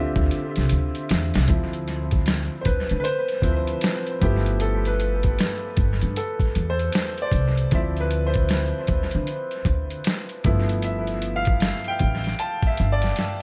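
Sultry and late-night, this neo-soul R&B excerpt rides a swung sixteenth-note groove in 4/4, built on a gritty, pitched-down boom bap sampler-style drum kit of thumpy kick, medium-tuned snare and hi-hat that enters at 0.2 seconds and plays a fill just before 1.5 seconds. A dark, woody pizzicato upright bass holds the low end, while a clear upright piano, smooth and vintage with long sustain, sits up front and takes a solo from 1.5 seconds over alternating Dm9 and G13 chords. Dub echo trails the piano and the compressed, tape-warm drums, and light studio reverb rounds out the echo-heavy mix.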